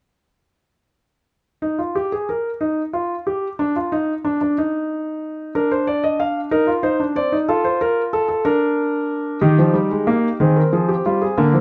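In a 6/8 at 61 beats per minute, counted in dotted quarters with a straight feel, this elegant, joyful baroque-style three-part fugue unfolds on a solo concert grand piano tuned to A4 = 439 Hz, sounding from 1.6 to 11.6 seconds as a passage cut from a longer piece. The piano is warm and up front, with a deep bass and a range from D3 to F5, and harmony first takes shape at 5.5 seconds on Bb/D before moving through Cm7/Eb, F, back to Bb/D, then Eb and Fm7/Eb. Close, detailed microphones catch the instrument within a moderate stone room reverb.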